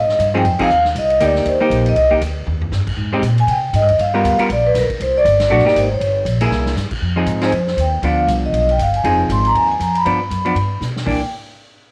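A brisk swung 4/4 drives this late-night, moody slice of small-group swing and bop, cut from a longer piece, with band accents landing at 0.6 and 5.4 seconds. A mellow, airy vibraphone played with soft mallets carries the melody up front, its ringing tone shimmering with slow motor vibrato. Beneath it, a woody pizzicato upright bass with transformer saturation and a dark, clean hollow-body electric guitar with a cassette-tape character supply the harmony, while a punchy, natural big-room drum kit sits further back and adds fills, all set in a small room with moderate spring reverb and the grain of a home cassette recording.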